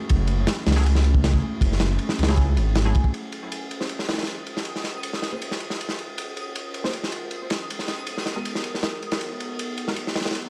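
Drum and bass with a jungle edge at 158 BPM, raw in mood, this excerpt opens on a drop where a deep, rumbling detuned saw bass plays only until 2.9 s beneath a crunchy, saturated breakbeat kit up front, with a tight kick, dark cymbals and a gritty, rolled-off top. A warbling, lo-fi tape-like pad holds sustained chords in the background with chorus and reverb, while muted dub chord stabs with ensemble chorus and dub echo take a filter sweep from 3.1 s as the harmony moves from Gbm9 to Bbm9 and Abm9. From 3.7 s a twinkling granular texture adds an octave-up shimmer on a single high note, and a small room reverb gives the production a dark, warm character.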